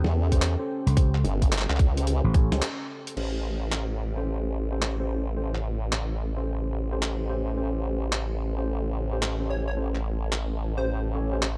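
A detuned, formant-filtered wobble bass with tube saturation sits up front in this swaggering, gritty glitch hop excerpt alongside a pitched-down, tape-warm boom bap sampler kit of handclaps, hi-hat, crash and snare, while a tight, layered electronic kick and a punchy, amped slap bass drive the opening up to a brief break at 2.6 seconds; a mellow tine electric piano adds stabs through chorus, sidechain pumping, a low-pass filter and dub echo, a very quiet dark analog pad holds moody sustained chords beneath, and a catchy square-wave unison lead with vibrato and dub echo enters at 9.5 seconds, the whole mix sitting in a digital ambience.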